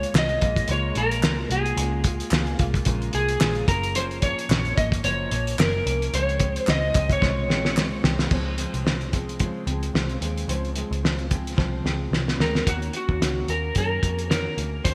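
Sunny and hazy, this indie pop and bedroom pop excerpt moves at 110 BPM in 4/4 with a gentle sixteenth-note swing, set in Db major over chords of Db6, Gbmaj7, Dbmaj7 and later Ebm7. An up-front electric slide guitar carries the melody with a slightly broken-up tone and lush chorus, falling silent at 8.0 seconds and returning at 12.4 seconds. Beneath it, a full-bodied, jumbo-sized fingerpicked steel-string acoustic guitar supplies accompaniment, its chorus and warbly pitch drift adding to the dreamy haze. A vintage muted picked electric bass gives a dark, round, foam-muted low end, while a cloth-damped, thuddy drum kit sits up front with a fat snare, tight kick, muffled dark cymbals and gritty saturation, all wrapped in gated reverb and punctuated by two drum fills. Hollow, close group handclaps sit in the background until 7.9 seconds, and the whole mix has a bright 1980s-style digital sheen with light reverb.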